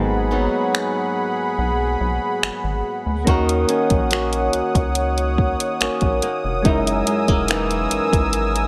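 A straight 4/4 late-night contemporary R&B groove takes shape as snaps, hi-hat and a soft kick from a smooth electronic kit arrive at 0.7 s, setting a sensual mood beneath round, mellow electric-piano-like synth keys with chorus, a detuned sawtooth analog pad with chorus sitting up front, fingerpicked nylon-string guitar arpeggios with audible finger squeak and tape echo, and a rubbery, hollow square-wave bass, while the harmony moves from G#m7 to D#m7 to F#13 in a light reverb.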